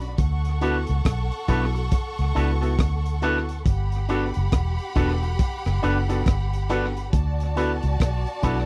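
A dry, close 1970s-style studio sound with small room ambience frames this romantic, smooth lovers rock reggae excerpt in D major at 69 BPM, swung on the sixteenths and moving from D6 to Gmaj7 and back to D6. A round, foam-muted vintage electric bass sits up front beside a crunchy, saturated breakbeat kit whose tight kick, hi-hat and rim click carry a gritty, rolled-off top. From 0.6 seconds a brilliant, worn grand piano with short sustain and twangy envelope-filtered guitar stabs join in, while a lush, distant violin section adds an expressive, vibrato-laden second line.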